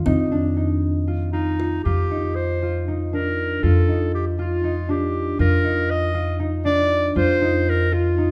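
A soft kalimba in the background, a mellow concert harp and a woody pizzicato upright bass begin together in this hopeful, shimmering piece of contemporary chamber music in 7/8, moving at 236 BPM in eighths with a straight feel. The thumb-plucked harp rolls out ringing arpeggios, while the steel-strung bass holds a low F beneath them and the kalimba adds a short, fingertip-plucked second line. A clear, classical-style clarinet enters as a solo melody at 1.3 seconds. The kalimba falls away at 1.8 seconds, leaving clarinet, harp and bass up front for the rest of this excerpt. A moderate recital-hall reverb lends the ensemble an airy, luminous space.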